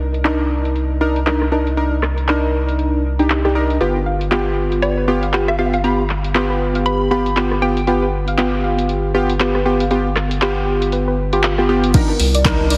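A round, dark analog bass opens this deep house excerpt at 118 BPM in C minor, pumping under sidechain as a dry, punchy analog drum machine joins with hi-hat, rim click, handclaps and crash cymbal, its overdriven kit softened by low-pass filtering on the hats, snare and cymbals. Warm analog keys play up-front stabs with chorus and tape echo, their detuned, wave-folded sawtooth tone carrying a filter sweep over the Cm9 chord. The swung 16th-note feel keeps the smooth groove relaxed, and at 3.8 seconds the harmony moves to G7 as a soft, gentle pluck arpeggio enters in the background, blurred by cassette tape character and echo. From 4.8 to 8.1 seconds a hollow, bouncy square-wave pluck plays a short melody with subtle chorus. Near the close at 11.9 seconds the chord returns to Cm9 and a deep, layered, overdriven electronic kick drum lands, all within a lush hall reverb and a heavily compressed, radio-like sound.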